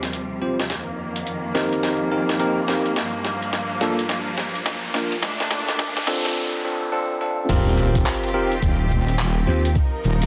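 This gritty, playful glitch hop excerpt at 106 BPM, with a swung sixteenth-note feel, opens on a distant, smooth symphonic string section holding sustained chords, roughened by vintage 12-bit sampler grit and sidechain pumping. Beneath it, a pitched-down, tape-warm boom bap drum kit with crash, handclaps, hi-hat, shaker and a medium-tuned snare plays a fill across most of the build-up, while electronic riser and noise sweep effects sit in the background. From 0.4 seconds a bell-like, clean tine electric piano plays stabs up front, shaped by a low-pass filter, tape echo and sidechain pumping. The harmony moves from Eb69 through F7sus4, Gm7 and Bbmaj7 before the drop lands at 7.5 seconds back on Eb69, with an impact and sub drop. Here a heavy, detuned wobble bass, built from sawtooth and sine with chorus and tube saturation, enters alongside a thumpy electronic kick drum in small room ambience. 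A punchy, growly slap bass note flickers briefly at 9.5 seconds, and light reverb glues the mix.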